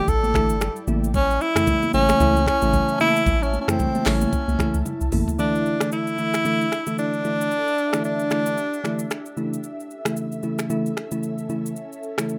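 A lightly swung 113 BPM afrobeats groove from an electronic drum kit with knocking kick, smooth hats, snaps, claps, rim clicks, shaker and toms carries this sultry, mellow fragment of a rough home demo, where a clear, up-front tenor saxophone with light vibrato and scooped jazz notes sings over a sparkling, bell-like FM electric piano, an ethereal, airy pad sits in the background, and a deep, punchy sine sub bass with soft-handed, thick-skinned congas drops out during a drum fill just before 5.4 seconds as the harmony moves between Dsus2 and A.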